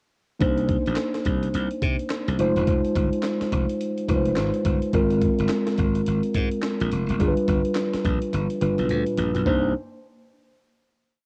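Recorded at home onto cassette and bathed in a moderate spring reverb, this short, complete new jack swing piece has a hazy, lo-fi sheen while its parts stay up front. A breakbeat sampler-style kit carries a hard-swung drum-machine beat, with a thumpy kick, a high-tuned snare layered with handclaps, hi-hat and toms, all roughened by vintage 12-bit grit and cassette tape and re-recorded in a small room. A glassy slap bass, bright and growly, bounces through a swung synth-funk line peppered with muted ghost notes and chromatic approach notes. A mellow tine electric piano holds clean, drop-2 voiced chords decorated with grace notes, moving through Cm9, Fm7, Ab69 and G7. The mood is punchy and confident, and a drum fill from 8.3 seconds leads into a final Cm9 chord at 9.5 seconds.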